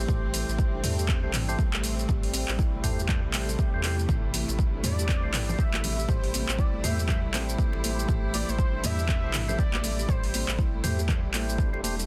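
A dense, heavily limited modern master with light reverb frames this spiritual, warm afro house excerpt, which moves at 120 BPM in 4/4 with a swung sixteenth feel and rests on a single Am7 chord in A minor throughout its 12.1 seconds. An overdriven, up-front electronic kick anchors the groove alongside a layered deep house kit of handclaps, metallic hi-hat, shaker and toms, while a round sine sub bass pulses underneath with sidechain pumping. A ringing, close-miked stainless steel handpan plays meditative arpeggios with sharp finger strokes and tape echo, joined by percussive tonewheel organ stabs with key click, a slow rotary speaker and echo, and a lush, bowed string section holding sustained chords in the background, all three breathing with the sidechain. Saturated congas with hard hands enter quietly at 4.1 seconds, and at 4.8 seconds an expressive sawtooth-and-triangle synth lead with analog chorus, vibrato and a moving notch sings a short melody before stopping at 10.6 seconds.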